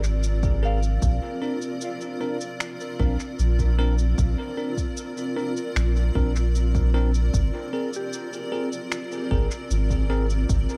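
A digital ambience surrounds this peaceful, spacious ambient dub excerpt, where a blurred, evolving granular cloud pad holds sustained chords over an up-front, round sub bass, a mellow FM synth bell plays arpeggios with chorus and dub echo in the background, muffled, pitched-down cabasa and finger snaps carry their own dub echo, a deep, tape-warm electronic kick drum joins from a small room at 0.4 seconds, and clean, bell-like tine electric piano stabs with dub echo enter at 0.6 seconds.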